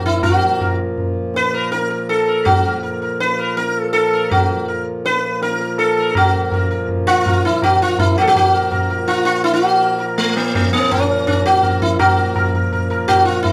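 The recording places a live ensemble in a moderately reverberant large studio, with the sitar up front and the tabla sitting more distant in the room. This short Hindustani classical passage, cut from a longer piece, is in raga Todi on Bb, in 4/4 at around 163 BPM with a straight feel. The tempo gradually speeds up throughout, and the mood stays introspective and solemn. The bright, buzzing sitar carries the melody, its plucked notes shimmering with sympathetic strings. Beneath it, a pedal harmonium holds a reedy, dark, breathing drone. Low-tuned tabla ring out from the back of the space as all three play together, and the music moves into a new section at 6.2 s.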